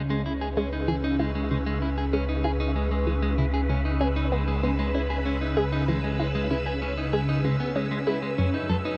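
Cosmic and luminous, this 96 BPM excerpt of sequencer-driven space music sets swirling, bright string-machine chords with phaser and ensemble chorus up front over a deep, round analog bass, while a nasal, wave-folded analog pluck riff with cassette tape and analog delay sits in the background and a clean, picked electric guitar plays arpeggios from 0.1 seconds, all in a vast, echoing space as the harmony moves from C#m7 to F#7(no3) at 8.4 seconds.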